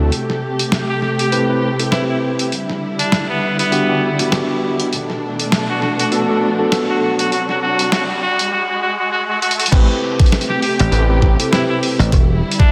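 Gritty and playful, this glitch hop excerpt moves at 100 BPM in A dorian with a swung sixteenth-note feel, cycling through Am7, Em7, Bm7 and D7. A dark, woody string section holds lush sustained chords up front, pumping against the sidechain, while a worn, slightly out-of-tune tine electric piano punctuates with stabs through tape echo and a low-pass filter that sweeps during the build-up. A pitched-down, compressed boom bap sampler-style kit with a medium-tuned snare, hi-hat and crash carries the groove, and an electronic swell and riser hovers in the background. A clear, forceful trumpet enters at 0.9 s with a jazz-style solo of scooped notes and light vibrato, its vintage tone trailed by tape echo. After a drum fill, the drop lands at 9.7 s with an overdriven, knocking electronic kick and a saturated sawtooth synth bass with ring modulation, joined at 10.8 s by a bright, punchy thumbed slap bass. 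A lush hall reverb soaks the mix in a dreamy haze.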